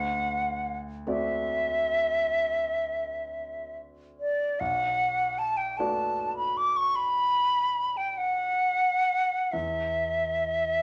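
The rhythm moves in a slow, rubato 12/8, with the dotted-quarter pulse drifting between 41 and 52 BPM. This is a hazy, wistful impressionist classical duo for flute and grand piano, cut from a longer piece and tuned to A4 = 436 Hz. The silver concert flute carries the melody from D5 to D6 up front, its metallic, airy tone lifted in the highs and shaped with vibrato, soft attacks and expressive phrasing. Beneath it, the grand piano supplies an intimate accompaniment from B1 to D5 at a lower level, its natural sound carrying audible action noise. The harmony rests on D9, moves to Bm7 at 4.6 seconds, and leaves the chords behind at 9.5 seconds before the passage ends at 10.8 seconds. A moderate large-studio reverb with a 0.8-second decay surrounds the pair.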